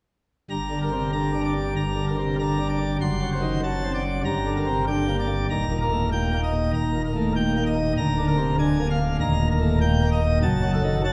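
A full pipe organ plenum carries this dramatic, majestic classical organ toccata alone, sounding from 0.5 to 11.1 seconds in a brief passage cut from a longer piece. Set in G minor at 97 BPM in a straight 4/4, the music spans from a deep D1 up to C6. Its baroque voicing is brilliant, with mixtures crowning the sound and a crisp chiff, and the organ sits up front in the mix. The harmony moves from G minor through D7 over F sharp and back, then to E flat, B flat 7 over D and E flat again before reaching a rootless D over F sharp. A wet church reverb with a 3.5-second decay surrounds the playing, placing the listener further back in the room and letting each chord hang in the space.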